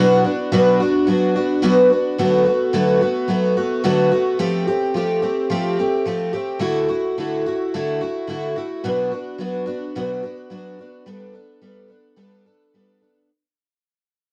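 A picked twelve-string acoustic guitar plays alone, shimmering and octave-doubled up front with cassette-tape warmth and light reverb, in this jangly, nostalgic rock fragment at 108 BPM in D major, moving through Bm, D6, Fadd9, Dadd9 and Gadd9 before fading out from 4.4 to 13.3 seconds, cut from a longer home recording.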